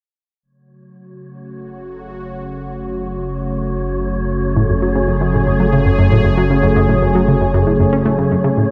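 Mysterious and cosmic, this sequencer-driven ambient space music excerpt opens at 0.4 s with a bright, up-front, sweeping resonant pad of detuned sawtooth chords under chorus, fading in alongside a deep, round analog bass; a breathy, wind-like tuned noise texture with its own built-in reverb fades in from 2.3 s, and at 4.6 s a tight, driving sequenced synth riff of detuned sawtooth with a filter pluck, chorus and analog delay pushes forward, all set in a plate reverb within a dark production.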